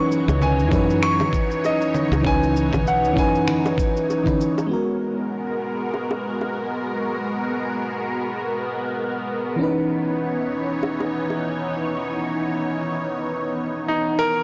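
A swung 4/4 groove of a gritty, thumpy electronic kick, electronic cabasa, congas and finger snaps, tight high-tuned bongos and a round, woody fretless bass drives the opening 4.7 seconds of this wistful sunset chillout excerpt, while a clear, intimate grand piano with tape echo carries the melody over a soft FM electric piano and a thick, detuned pad with chorus and phaser, the blown-out, overdriven recording bathed in lush hall reverb as the electric piano, pad and occasional bongos carry on to 14.4 seconds, the grand piano returning briefly at the close.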